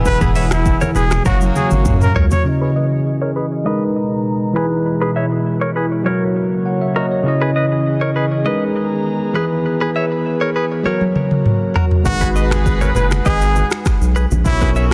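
A dense, heavily limited modern mix with light reverb frames this sultry, mellow afrobeats excerpt at 100 BPM in 4/4, where a bright, bell-like tine electric piano and a twangy, direct-recorded clean electric guitar riff run throughout over an airy, breathy pad that holds sustained chords until 12.0 seconds, while a thick saturated sub bass, an electronic afro-pop drum kit with a deep kick and metallic hats, very quiet thin-skinned congas, a clear trumpet melody with digital delay, and a distant, roomy horn section play at the opening and return together at 12.1 seconds, the drums coming back slightly earlier at 10.9 seconds with a fill.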